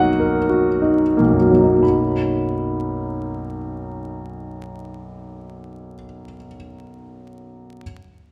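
Impressionist classical solo piano in B major, serene and luminous, drifting in a rubato 3/4 at 48 BPM and slowing over its opening 1.8 seconds on a Bmaj7 chord before moving into a second section. A concert grand, spanning B1 to B5, carries the whole 7.8-second fragment cut from a longer piece, with an intimate, polished tone, deep bass, long sustain and audible action noise. The recording places the listener further back in a recital hall with a wet reverb, while vinyl crackle adds a gentle patina.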